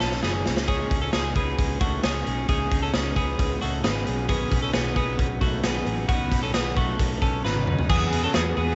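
A straight 4/4 pulse at 133 BPM drives this breezy, nostalgic slice of jangly indie pop, cut from a longer piece. The raw garage drum kit sits up front with a punchy kick, medium-tuned snare, hi-hat, toms and crash cymbal, its gritty, saturated sound filling a pumping stone room, with fills at the top and again from 7.4 to 7.9 seconds. Beneath it, a vintage muted fingered electric bass gives a dark, round, foam-muted low end. A clean, compressed twelve-string electric guitar rings forward with picked arpeggios. An electric guitar at the edge of break-up adds twangy, slightly broken-up accompaniment further back in the mix. The harmony rests on Badd9 before moving to Eadd9 near the close, and the home cassette recording, with light small-room reverb and a rolled-off top, lends the whole track a hazy, lo-fi character.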